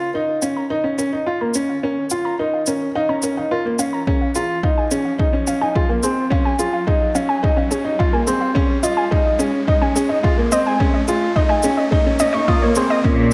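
An intimate, boxy grand piano sits up front with a riff in its middle register, its action noise audible and a delay trailing its notes, in a melancholic, hypnotic piano-and-strings electronica piece at 107 BPM in 4/4 with a straight feel. Around it, a warbling, dusty, mellow pluck built from detuned square and sawtooth waves with a noise layer plays high arpeggios, treated with chorus, delay and sidechain pumping while a filter sweeps across it throughout. A layered shaker and woodblock, overdriven and high-passed, tick along, and a punchy, overdriven electronic kick joins at 4.1 s, as the harmony moves from Bb minor to Db. An electronic riser climbs through the whole passage as a build-up, with a swell arriving at 11.9 s. At 13.0 s a lush, bowed cello section enters on a low Bb with expressive vibrato and sidechain pumping, just as this cut from a longer piece ends. A moderate recital-hall reverb with small-room ambience frames the sound.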